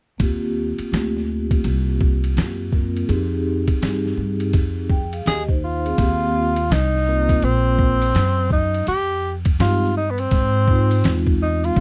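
Jazz-hop with a smoky, cool swing, where a muffled, thumpy sampler-style drum kit and a woody pizzicato upright bass sit up front under mellow, ringing soft-mallet vibraphone chords, and a breathy, whispered tenor saxophone enters at 5.3 seconds with scooped, subtone notes, all framed by a dry, close 1970s-style sound with vinyl crackle.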